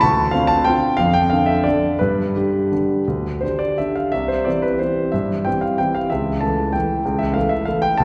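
A solo concert grand piano, close and intimate with audible action noise and deep bass, carries this elegant, playful classical waltz in 3/4, moving with a rubato feel between 161 and 206 BPM. Across these 8 seconds, cut from a longer piece, the harmony passes through Dm7, Dm/F, G and C before landing on A7/C#. A lush concert hall reverb with a 2.2-second tail surrounds the piano, and the high end is rolled off above 11 kHz.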